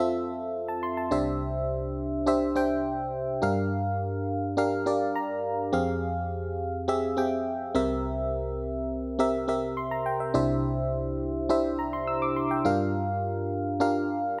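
A solo FM electric piano opens this pop excerpt on its own, ringing out glassy chords with a bell-like attack that decays over a noise layer. The mood is uplifting and glossy, moving in a straight, even four-beat feel through Fmaj7, Cadd9 and Gm7 before turning to a darker Fmadd9 and a C7. A short piano fill from 4.9 to 5.7 seconds adds a flourish just before that shift. Chorus gives the instrument a shimmering sheen, and it sits up front across a span from deep bass notes to bright upper tones. A moderate scoring-stage reverb surrounds it throughout, the opening idea returns at 10.3 seconds, and the passage stops at 14.4 seconds as a fragment of a longer piece.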